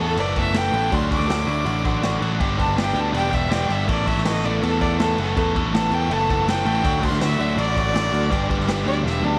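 A straight 4/4 pulse at 162 BPM drives this bittersweet, cool indie rock excerpt, where a rich, focused fiddle with light vibrato and slapback echo solos from a distant spot over a biting, double-tracked overdriven guitar riff, a punchy, up-front picked electric bass, and a vintage acoustic drum kit with a medium-tuned snare and rolled-off top that enters at 0.2 seconds and closes with a fill at 9.1 seconds, as the chords cycle through Asus2, D and G in a dry mix with little reverb.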